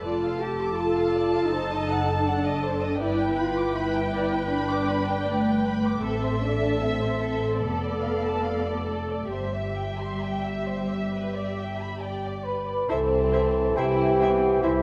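A clear, punchy French horn section arrives at 12.5 seconds with sustained chords, crowning this tender, lyrical passage cut from a slow romantic orchestral movement played with rubato. Before it, muted violins carry the melody and a second line over violas, cellos and double basses, all con sordino and veiled in a dark, lush ensemble sound with vibrato, bathed in the reverb of a concert hall. An airy silver flute slips in from a distance at 12.4 seconds, just ahead of the horns, and as the chords resolve to C at 12.9 seconds, a mellow clarinet and a soft-attacked bassoon join from afar.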